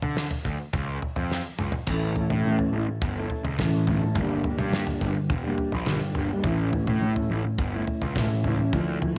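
Psychedelic rock in A phrygian dominant at 105 BPM, dark and trippy, cut from a longer piece. A growly, fuzz-drenched picked bass and a damped 70s drum kit with a fat snare and tight kick open together, and a drum fill at 1.3 seconds leads into a clean, fingered electric guitar riff entering at 1.9 seconds, double-tracked through a rotary speaker and mixed louder than the rhythm section. The chords move from Dm to A, Gm and back to A, and the sound is rolled off above 8.0 kHz with a moderate echo chamber reverb lending a dusky studio space.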